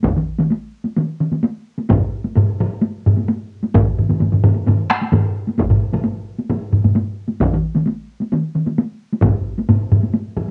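Driving and powerful, this short cut from a longer Japanese traditional piece features a taiko drum ensemble pounding out a straight 4/4 pulse at 131 BPM. Four taiko ensemble parts share the percussion, the first three sounding from the opening moments, with hard sticks on two of them and heavy sticks on the third. A fourth taiko part, also struck with heavy sticks, arrives at 1.9 s and sits louder than the others, its tone compressed and saturated. The drums are placed up front, one heard close, another carrying a live-room character, and a third framed by a small space. The whole recording has the dull, muffled top of a home cassette tape, set in a moderate small-room ambience that lends the hits a short tail.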